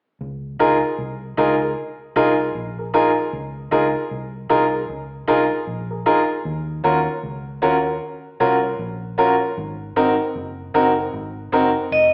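An AM radio sound bathes this smooth, romantic lovers rock reggae excerpt in a large, wet studio reverb, as if the band were playing live in one room, moving at 77 BPM with a swung sixteenth-note feel in Db major over Db69, Ebm7 and Ab7 chords. A dark, round, foam-muted electric bass sits low and subdued beneath a clear, natural grand piano that carries the accompaniment up front from 0.6 seconds. Just before the cut at 12.1 seconds, a metallic, ringing vibraphone struck with hard mallets, its slow motor vibrato adding a shimmer, enters prominently at 11.9 seconds with a single melody note.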